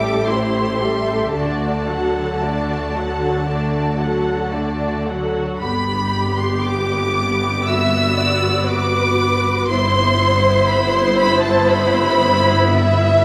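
A slow, rubato pulse of 55-61 BPM in 4/4 carries this tender, lyrical romantic movement for string orchestra in G major, cut from a longer piece and heard in a concert hall with moderate reverb. Up front, a warm violin section sings the melody high with smooth vibrato, while a darker, more distant violin section traces an expressive second line and a rich, intense viola section fills the accompaniment. Beneath them, a focused cello section sits in the background and a clear double bass section anchors the low end, as the harmony moves from Am7 and D toward G at 5.6 seconds and on to Cmaj7/G at 9.7 seconds.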